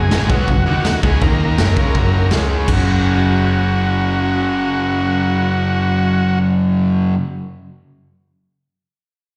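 Up-front, double-tracked fuzz guitar drives a bright, distorted riff through this raw, rowdy garage rock excerpt at 163 BPM in F# major. A round, punchy hollow-body bass with tube saturation sits beneath it, while a buzzy overdriven combo organ with heavy vibrato carries the melody through slapback echo and digital delay, and a clean second combo organ holds sustained chords in the background. A gritty, saturated garage kit with a boomy kick and a rolled-off top plays only until 2.8 seconds, and the whole performance comes across as a live gig heard through the venue's PA in a recital hall's reverb.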